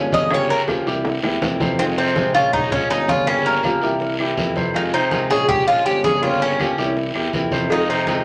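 Nostalgic and gently glowing, this brief cut from a longer piece is Cuban son in the guajira vein, moving at 162 BPM in a straight 4/4 and set in F minor. A bright, metallic Cuban tres with doubled, partly octave-doubled strings carries the melody up front, taking a solo at the start against a drum fill from 1.1 to 1.8 seconds before the band settles into a circling Gm7b5, C7, Fm7, Bbm7 progression. Behind it, a boxy, fingerpicked old ladder-braced acoustic guitar with tired strings sits in the background, while a clear concert grand piano with deep bass lays out open arpeggios. A warm, close-miked tuba with vibrato supplies the bass line. The percussion blends thick-skinned congas played with soft hands, a raspy guiro, very quiet woody claves, and tight, high-tuned vintage bongos and cowbell that sit in the background, appearing at the opening and again near 7.7 seconds. A wet small-room reverb and a layer of vinyl crackle give the whole an aged, intimate character.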